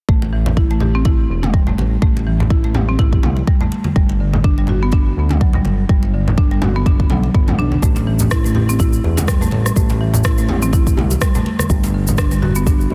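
Afro house at 124 BPM in A dorian, this short excerpt cut from a longer piece has a warm, driving mood and a swung sixteenth-note feel. A buzzing, woody marimba played with medium mallets carries arpeggios between D3 and G4, its dry, close-miked tone shaped by a low-pass filter, tape echo and sidechain pumping. Beneath it, a smooth sawtooth-and-square synth bass with a fast attack and vibrato sits up front from E1 to D2, also pumping against a deep, produced electronic kick. Bright, low-tuned congas with a saturated edge run throughout, while a layered deep house kit adds rim clicks, toms and a softly clipped snare. At 7.8 seconds a tight, cracking djembe enters in the background alongside a grainy egg shaker, as the harmony moves from Am and G back to Am before settling on G5, all within a small room ambience and a dense, heavily limited modern master.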